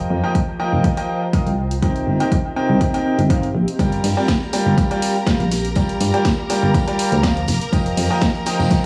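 A bright, vintage-gritty grand piano riff pumps with delay over a round FM bass and a blurred granular pad in this soulful, energetic piano house excerpt in G minor at 122 BPM, with an overdriven punchy kick and drum machine hi-hat and snare arriving at 0.3 s, and a bowed violin section plus a natural-sounding jazz kit of hi-hat, snare and tambourine slipping into the echo-heavy background at 3.8 s.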